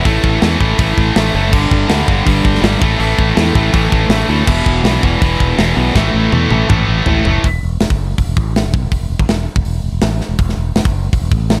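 A double-tracked, high-gain distorted guitar leads this relentless heavy metal excerpt at 162 BPM, playing a low riff through A5, G5 and E5 power chords before dropping out at 7.4 s. A tight, up-front acoustic drum kit with bright cymbals, a medium-tuned snare and a tight kick drives straight 4/4 time and closes the riff with a fill from 6.0 s, while a growly, direct fingered bass carries on with the drums to the end at 11.6 s. The dark production keeps reverb minimal, so the heavy mix feels close and dry.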